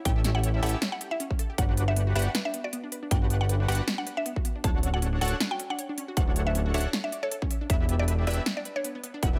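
A half-time, 16th-note swing pulse at 157 BPM drives this euphoric, bright future bass excerpt in D major, where a punchy electronic kick and an overdriven dance kit with crisp hats and a punchy snare sit up front beside a fat, nasal, saturated analog bass, while a detuned supersaw stab riff, lush unison pluck arpeggios with digital delay and a woody, round mallet-like FM pluck melody with chorus and dub echo all pump against the sidechain over A7, Gmaj7, Dmaj7 and Em7 in a dry, close mix.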